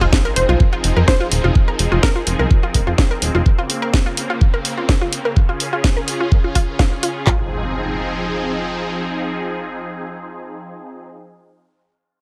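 A straight 4/4 pulse at 126 BPM drives this expansive, dreamy progressive house passage in F minor. An up-front pop kit supplies a knocking kick and handclaps, layered with a house kit whose cracking snare and hi-hat carry a tape-warm, small-room character. A punchy, funky analog bass with wave-folded sawtooth bite and tube saturation pumps under the sidechain, joined by a lush, detuned unison pluck melody sitting in the background with dub echo; both stop at 3.4 seconds. Meanwhile an analog pluck spins bright, chorused arpeggios through a filter sweep, and a filtered supersaw swell holds evolving, sustained chords over Fm7, Bbmadd9 and Db, each breathing with sidechain pumping. The drums and arpeggios drop out around 7.3 seconds, when a sub drop and impact return, and the supersaw carries the return to Fm7 until 11.1 seconds in a dry, close-sounding mix.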